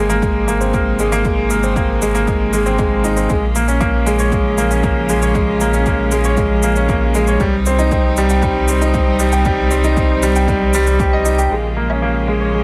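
Light studio reverb gives this short piano-and-strings electronica excerpt an intimate, close feel, with a melancholic, hypnotic pull in Bb dorian at a straight 117 BPM in 4/4. Up front, a brilliant baby grand piano repeats a riff between G3 and G5, its long sustain and audible action noise softened by a low-pass filter and trailed by tape echo. Beneath it, a round sine sub bass with a fast attack holds deep sustained notes from Ab1 to C2, pumping against the sidechain. A bowed string quartet, one player per line with light vibrato, fades in across the first 11.5 seconds with intense chamber chords. A punchy, layered electronic kick and an overdriven shaker and woodblock drive the groove as the harmony moves from Abadd9 through Bbm7 and Cm, settling back on Bbm7 at 11.5 seconds for a brief closing section.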